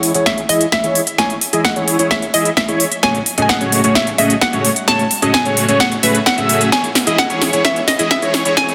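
A dense, compressed supersaw riff sits up front with 12-bit sampler grit, sidechain pumping, tape echo and a filter sweep, driving this anthemic, emotional festival progressive house build-up at 130 BPM over C#m, F#madd9 and E6. A hollow, bouncy square pluck carries the bright melody through chorus and tape echo, while a bold unison lead plays arpeggios with cassette coloring, pumping and its own filter sweep. Up front, a big-room kit with a punchy snare and crisp hats plays a drum fill, a background kick joins at 0.3 s, and a very quiet riser sits beneath, all in a huge ambient reverb and a heavily limited master.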